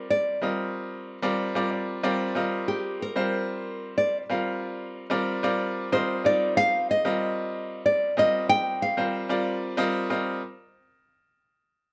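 In a straight-feel 6/8 at 62 dotted-quarter beats per minute, this slick, funky jazz excerpt in Eb major sits on an Ebmaj9 chord before turning to Ebadd9 at 10.1 seconds. Up front, a warm, fingerpicked classical nylon-string guitar carries the melody as a solo between G4 and G5, ending at 9.7 seconds. A brilliant, polished baby grand piano with short sustain accompanies it just as close, adding a fill from 1.4 seconds, all inside a moderate large-studio reverb.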